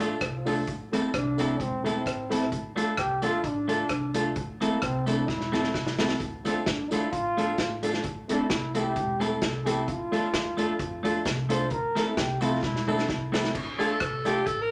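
Energetic and driving, this swung ska clip at 131 BPM in D minor rocks between Dm and Am as a roomy, lightly vibrato trombone solos over twangy spring-reverb guitar with dub echo, dark slightly detuned upright piano stabs, woody pizzicato upright bass, a punchy vintage drum kit with fills at 5.3 and 12.6 seconds, and jingly tambourine, before a raspy, gritty alto saxophone takes over at 13.8 seconds.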